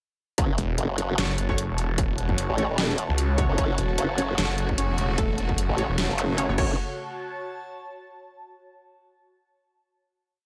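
A swung half-time beat of distorted electronic kick and an overdriven drum kit with deep snare, closed hat and crash drives this heavy, chaotic wobble dubstep piece, which is one long drop from 0.4 seconds. Up front, a detuned, formant-filtered wobble bass with chorus shifts its wobble speed while a snarling, growling saw bass answers in chopped phrases, as a breathy, phased pad and sparse echoing orchestra-hit-like stabs sit in the background. From 3.6 seconds a lush, tape-touched pluck repeats a riff in octaves over a clear, bowed string section pumping in the background, a very quiet zap marks a transition at 6.2 seconds, and the airy pad carries the final note alone after 6.8 seconds.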